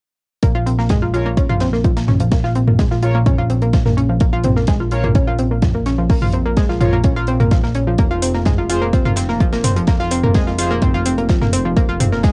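A hypnotic, driving melodic techno excerpt in Bb minor at 127 BPM opens at 0.4 seconds with an overdriven, deep electronic kick up front, a fat, detuned sawtooth bass pumping under the sidechain, and a round analog pluck spinning chorused, delayed arpeggios between F3 and F4, all set over a faint acoustic kit of high-passed hi-hat and medium-tuned snare. A deep house kit with metallic, overdriven hats and pumping toms joins at 0.9 seconds, and brassy, bold synth stabs with vibrato and a filter sweep arrive at 1.1 seconds, while the harmony holds on Bbm before moving to Fm at 8.0 seconds. The sound has the soft, dulled top of a home cassette recording, with light reverb and the drums re-recorded in a large room.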